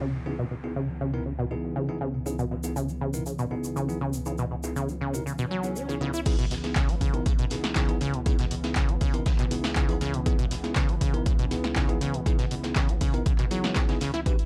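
A warm, detuned analog pad and a squelchy, resonant sawtooth acid bass, both under filter sweeps and sidechain pumping, open this hypnotic, driving 120 BPM acid house excerpt in C# minor over a C#m7 chord, alongside very quiet brushed drums and a downlifter and swell. They are soon joined by bell-like tine electric piano stabs with delay and a grainy tube shaker, until the drop at 6.3 s brings in a punchy, tape-warm electronic kick up front and an analog drum machine with crash, handclaps, hi-hat and snare, all in a dark production with light reverb.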